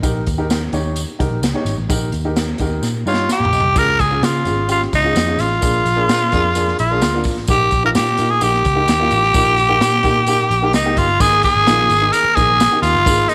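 This joyful slice of uptempo 1960s-style soul, cut from a longer piece, sits in a moderate plate reverb. A woody upright piano comps chords over a dark, round, foam-muted picked electric bass with tube saturation, while a polished, airy swinging big-band drum kit with a punchy kick and medium-tuned snare drives the straight feel, and a jingly tambourine sits close and dry in the background. A drum fill from 2.8 seconds, joined briefly by a piano fill, sets up the entrance of a raspy tenor saxophone at 3.1 seconds, which takes the melody up front with an edgy, gritty vibrato. The harmony moves through Eb, Db and Bb7 before returning to Eb. At 11.2 seconds a very quiet, mellow tonewheel organ enters with percussive sustained chords, key click and rotary speaker, as the music shifts to an Absus2 chord.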